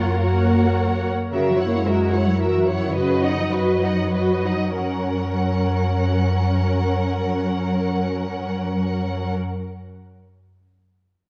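Violins carrying the melody and a second line open together with violas, cellos and double basses in this cheerful, lively classical-period movement for string orchestra in 3/4 and F# major at 92-112 BPM, where the tempo slows from 0.5 to 4.8 seconds over F#, F#7 and B/F# harmony, the bowed sections sing with vibrato and the violas add portamento, the rich double basses sit up front while the cellos sound distant, and a wet scoring-stage reverb and worn, warbling cassette tape with pitch drift colour this short cut from a longer piece.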